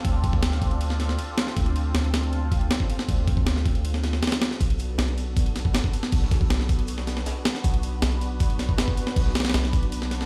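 A lush, airy pad of detuned sawtooth voices sounds from the outset of this atmospheric, raw drum and bass excerpt, holding sustained chords treated with chorus and phaser, while a deep, round dub sub bass sits beneath it from the very start. Up front, and also from the first moment, a sampler-style breakbeat kit drives a straight jungle groove in four, its compressed, pitched-up sound carrying a thumpy kick, a medium-tuned snare and a ride cymbal with gritty, tape-warm character. The harmony moves from Dm7 to Bm7 at 4.6 seconds, and at that same moment a second breakbeat kit slips in far in the background. This added layer brings hi-hat, shaker and a high-tuned snare, sounding acoustic, dark and smooth, with its top rolled off and its hats, snare, percussion and room all high-pass filtered. The whole piece rings out in a bare stone room on a big sound system, lending the mix a light reverb and a studio ambience until the cut at 10.3 seconds.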